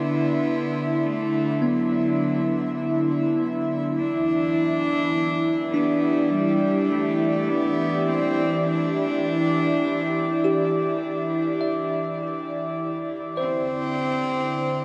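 Over a slow, straight 4/4 pulse, this serene ambient fragment drifts from D7 to Em7 inside a huge, reverb-soaked space. A breathy, full-bodied pad with chorus holds sustained chords up front, while a soft sul tasto cello sings a floating, distant melody that fades in, and a bell-like electric piano plays clean arpeggios in the background through subtle chorus and diffuse delay. A glassy, ethereal glass harmonica with slow beating joins at 4.0 seconds before the piece fades out from 10.2 seconds.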